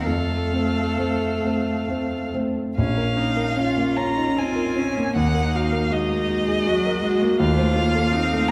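This is a slow, romantic classical movement for piano quartet in B-flat minor, tender and warm in mood, moving in a rubato 3/4 at roughly 64-84 BPM, and cut from a longer piece. A dark, woody violin carries the melody with vibrato, sounding distant, while a close, focused cello with a rich tone sings a second line beneath it. The viola, also bowed with vibrato, sits in the background as accompaniment, its tone focused and remote. Up front, the concert grand piano gives an intimate, vintage sound with deep bass, smooth short-sustained notes and audible action noise. All four play throughout, with a second section beginning at 2.8 seconds as the harmony moves from F through B-flat minor and E-flat minor to an F7 over E-flat at 7.4 seconds, all held in a wet recital hall reverb.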